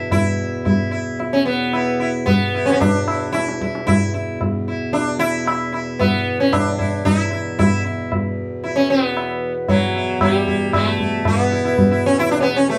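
In a straight seven-beat cycle that gradually speeds up, this meditative, solemn Hindustani excerpt in raga kafi sets an up-front sitar melody, buzzing and shimmering with sympathetic strings, against a reedy, breathing hand-pumped harmonium drone held low and close. Low-tuned tabla with a short, band-limited, vintage ring keeps the cycle, and the trio plays live together in a small, reverberant room. Near 11.3 seconds the music moves into a new section as the quickening pulse presses on toward the cut at 12.8 seconds.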